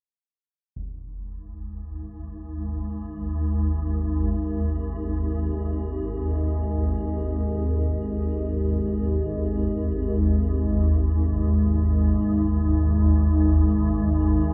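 Floating in free time, this dark, cavernous ambient drone piece is cut from a longer work. A single muffled stroke of concert bass drum, filtered low and recorded in a live room, sounds at 0.8 s. At 1.5 s a swarming drone takes over, sitting up front in the low register: a tense, evolving, granular mass of detuned sine voices with slow attacks and long releases. At 4.9 s a deep, moody pad fades in above it, holding sustained chords with a sawtooth edge, a sub octave and a chorused shimmer, softer and darker than the drone. The whole scene sits inside a heavy cathedral reverb whose long tail makes the space feel vast and shadowy.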